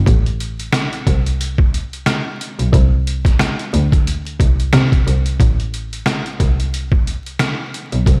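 Tough and reflective, this boom-bap hip-hop excerpt at 90 BPM in A minor sets a clear, bowed double bass with light vibrato and a smooth top, played up front from A1 to C3, against a gritty, compressed, pitched-down sampler-style drum kit of thumpy kick, medium-tuned snare, rim click and hi-hat that enters at 0.1 seconds, all swung on the 16ths beneath light reverb and vinyl crackle.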